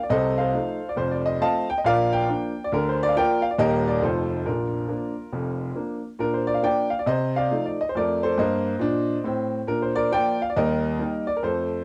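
Swung eighth notes at 138 BPM in 4/4 drive this exuberant stride piano jazz fragment, cut from a longer piece and running to 11.8 seconds. A solo grand piano carries everything, ranging from a deep Eb1 up to A5. The piano sits up front with an intimate, boxy tone, and its action noise stays audible beneath the notes. In Bb major, the harmony cycles through F7, Bb and Eb in two matching passages, the second beginning at 6.2 seconds. A modest small-room reverb and the home cassette recording give the whole fragment a close, homespun character.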